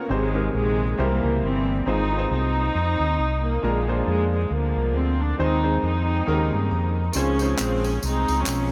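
Uptempo gospel with a swung, soulful and jubilant feel, carried by a warm studio string section playing the melody up front with light vibrato and a reedy, gut-string period tone, over a round, dark fingered electric bass and a clear, intimate grand piano whose action noise can be heard. The piano adds a fill at 6.5 seconds, and tambourine and handclaps join at 7.1 seconds as the harmony moves to a Dbmaj7. Everything sits in a dreamy mix soaked in a huge ambient reverb, and the clip is cut from a longer piece.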